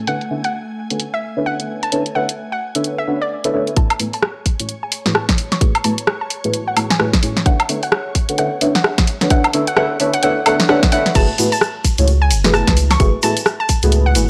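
A dry, gritty recording with light digital ambience carries this bouncy, skippy two-step garage excerpt. A dark chord stab with chorus and phaser and a cracking drum kit sit up front, a hollow square pluck carries the melody, and an ethereal pad with ensemble chorus drifts in the background until 11.2 seconds. A tight electronic kick joins at 3.8 seconds as filter sweeps on the stab and pluck drive a build-up over Bm11 and F#m11 chords, and at the drop at 11.2 seconds a round, soft sub bass with tube saturation arrives alongside a grainy, distant shaker.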